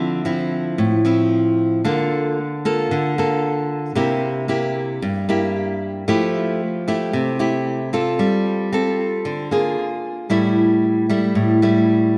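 A fingerpicked nylon-string guitar plays alone and up front for the full 12.2 seconds, its fresh strings giving a classical, acoustic tone with a touch of tape echo. This smooth, intimate bossa nova moves at 113 BPM in a straight 4/4, drifting through chords such as Dm9, Bbmaj7/D, C7, Fmaj9 and G9sus4. A lush hall reverb soaks the mix in a dreamy haze, and the short excerpt is cut from a longer piece.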